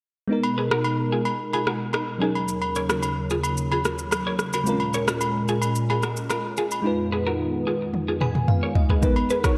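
Moderate, lush hall reverb wraps this dark, mellow, smooth afrobeats excerpt, cut from a longer piece. Up front, a deep house drum kit with a tape-warm, deep kick, rim click, shaker and toms drives a straight 4/4 groove, joined by close, dry acoustic agogo bells. A bell-like FM electric piano sparkles through chorus and phaser over a hollow, flute-like pad that holds sustained chords with ensemble chorus, while a clean, scooped electric guitar picks a riff through digital delay. The harmony moves from Abmadd9 through Ebm7, Bbm7 and Fm7b5, and the electric piano and drums both play fills from 7.9 to 9.0 seconds. At 9.0 seconds a velvety, detuned synth lead enters with a brief melody as the opening chord returns.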